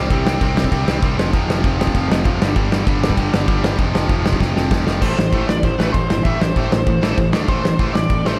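Heard through a big arena sound with moderate hall reverb, this rowdy, rebellious punk rock excerpt at 195 BPM opens with two overdriven electric guitars playing a riff through C5, F5 and G5. One guitar carries slapback echo and the other sits sludgy in the background, over a bright, growly bass and a loose, up-front acoustic kit with a tight kick and pumping room sound. A drum fill at 4.4 seconds leads into a new section at 5.0 seconds, where a biting lead guitar with slapback echo and digital delay enters up high as the harmony turns to A minor.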